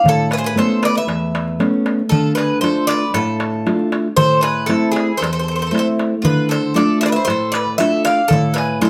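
Driving and intense, this short cut from a longer Greek folk piece puts a metallic, octave-doubled bouzouki melody up front beside a full-bodied fingerpicked dreadnought acoustic guitar, while a bright bowl-back mandolin adds a quieter second line and a crisp, saturated metal-shell darbuka joins at 0.1 s, set in moderate studio reverb as the harmony circles between A and D minor.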